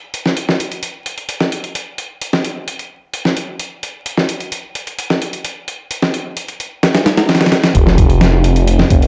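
Energetic and swaggering, this breakbeat excerpt at 130 BPM opens on a gritty, thumpy, sampler-style soul drum kit of kick, snare and hi-hat, with a tape-warm, compressed, large-room character and vinyl crackle, before a thick, swirling, phased and saturated detuned saw bass joins up front on F1 at 7.7 seconds for the drop from 7.8 to 9.1 seconds.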